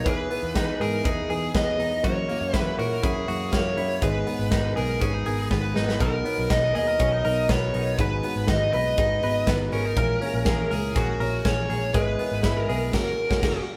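A dark, smooth lead guitar carries the melody up front, its overdriven, picked tone trailed by a digital delay. This is jangly indie pop in a straight four, nostalgic yet bright, cut from a longer piece and played by a band together in one room with a touch of wet studio reverb. Beneath it, a direct-recorded clean electric guitar spins twangy, compressed arpeggios, while a jumbo steel-string acoustic and an intimate upright piano, woody and boxy with audible action noise and long sustain, sit in the background. A vintage foam-muted bass gives a round, amped low end, and a big rock kit with a punchy kick, medium-tuned snare, and bright cymbals drives from the front, adding a fill at 5.5 seconds. The chords move from Emaj7 through G#m and Bmaj7 to A#m7b5, and the band hits a final accent on F#add9 at 12.9 seconds.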